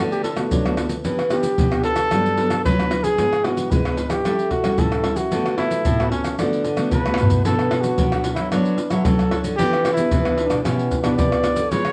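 A breathy, mellow trumpet sings the melody up front with vibrato and scooped notes in this playful, festive samba and choro excerpt, over a dark fingerpicked nylon-string guitar accompaniment, a full-bodied nylon-string bass with audible finger squeak, and band-limited vintage percussion of maracas, pandeiro, tamborim and a tight surdo, all captured as a live band in one room with a short, wet studio reverb and a drum fill at 7.1 seconds leading into a minor-key second section.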